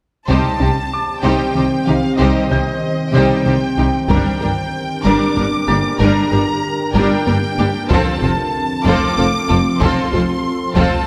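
Cinematic hybrid orchestral and electronic film score in a brooding, tense C dorian at 63 BPM in 6/8, where a smooth symphonic violin melody rides over a focused second violin line, intense violas, a background cello section and a distant, lush double bass section, while a glassy FM pad with ensemble chorus enters at 0.9 s beside a very quiet, warbling lo-fi pluck arpeggio, hard-stick taiko drums in a small room, and a faint vintage grand piano texture, all moving through Cm, Gm and F in a wet scoring stage reverb.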